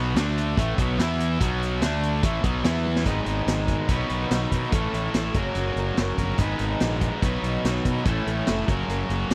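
A scooped, distorted electric guitar riff and a bright, overdriven second guitar open this confident, sunny classic rock excerpt in B mixolydian at 144 BPM, over a round, fuzz-toned fingered bass that sits up front and a vintage drum kit with a punchy kick and rolled-off top; after a drum fill at 2.9 seconds, the chords shift from D5, B5 and E5 to G#m7, B, A and F#, and a shimmering, fingerpicked twelve-string acoustic guitar enters at 3.1 seconds in the background, all in a dry, close 1970s-style small-room sound.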